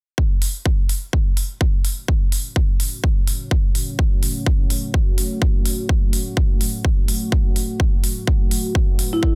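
A punchy, tape-warm electronic kick drives this bouncy, aggressive bass house excerpt at 126 BPM in F# minor, with a swung 16th-note feel and crisp, overdriven hi-hats that sound re-recorded in a large room. From 2.4 seconds a deep, dark pad of detuned sawtooth unison with a sine sub octave swells in slowly beneath them, its sustained chords moving from F#m to Bm7 at 7.8 seconds, shaded by chorus, reverb, a filter sweep and sidechain pumping. At 9.1 seconds a round, woody marimba with soft mallets sounds a single E4, all within a dense, heavily limited modern master.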